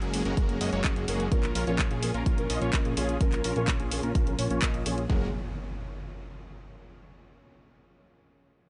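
A thick, detuned supersaw riff opens this euphoric, triumphant festival progressive house excerpt at 0.0 seconds, pumping against the sidechain under a low-pass filter sweep and a trail of delay. Beneath it, a fat analog bass pumps in the same way and carries its own filter sweep, while a house drum kit lays down layered handclaps and warm hats. A mellow, felt-muted upright piano adds boxy, intimate accompaniment with audible action noise, also sidechained and echoed by delay. A punchy electronic kick sits up front from 0.4 seconds. The harmony moves between F#add9 and A#m. At 5.1 seconds the drive gives way to an electronic impact that arrives up front within a digital ambience with a softened top end.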